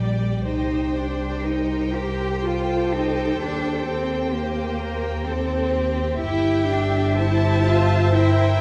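Smooth, even cellos and focused double basses sit up front in this yearning, elegiac fragment of a slow romantic movement for string orchestra in a rubato 3/4, beneath a lush, expressive high violin melody, a clear second violin line kept in the background and close, rich violas, all bowed with vibrato and set in a dark, warm production with wet scoring-stage reverb across the full 8.6 seconds.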